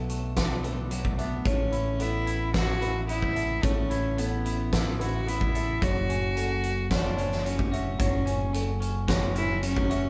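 Cinematic and hopeful, this post-rock excerpt has a band playing live in a stone room, with a huge arena drum kit driving it through a fat snare and punchy kick, and an overdriven, growling fingered electric bass sitting up front. A twangy, clean electric guitar and a soft, felt-muted upright piano play arpeggios, the piano mellow and intimate in the background with audible action noise. From 1.2 s a clear, biting cello carries the melody with light vibrato over chords moving from Bm7 to Aadd9 and F#m.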